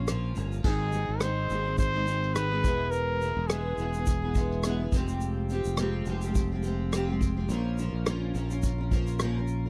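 A dry, close recording with a small-room ambience and a 1970s studio character frames this short cut from a longer acoustic pop piece in Ab major, moving at 105 BPM in 4/4 with a light sixteenth-note swing. The mood is heartfelt and carefree. A clear trumpet, miked near, carries the pop-style solo melody with light vibrato until 4.9 seconds. A double-tracked, picked steel-string acoustic guitar with an auditorium-like body supplies the accompaniment, while a bright, growly fingered electric bass sits low, punchy, direct and up front. A vintage brush kit adds kick, rim click, shaker and crash with dark cymbals and a rolled-off top, over chords that move from Bbm through Ab, E and Fmadd9 before returning to Bbm.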